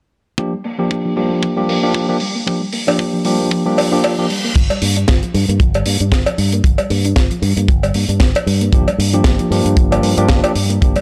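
Swung sixteenths in 4/4 give this sensual, cosmic nu-disco excerpt its groove, carried by a tight, up-front kick and a polished funk kit with bright cymbals and a high-tuned snare, with a cowbell joining at 2.9 seconds. A clean tine electric piano, filtered and touched with tape echo, comps on a Gm7 over a very quiet, round pluck arpeggio with chorus. A reverse cymbal at 3.9 seconds leads into the second section at 4.6 seconds, where a fingered electric bass with an envelope filter and tube saturation enters, up front and amped, all captured in a dry, gritty hardware sound with light reverb.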